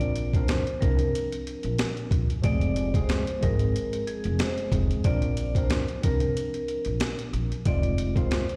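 From the first beat, a gritty, tough boom-bap hip-hop groove at 92 BPM in F dorian has a thumpy, compressed sampler-style kit with a high-tuned snare sitting up front, woody pizzicato upright bass, and a worn, slightly out-of-tune mellow tine electric piano comping under a ringing, metallic vibraphone melody with slow motor vibrato and digital delay, all moving between Bbadd9 and Fm in a big, reverberant bare room before a break at 6.4 seconds in this short cut from a longer piece.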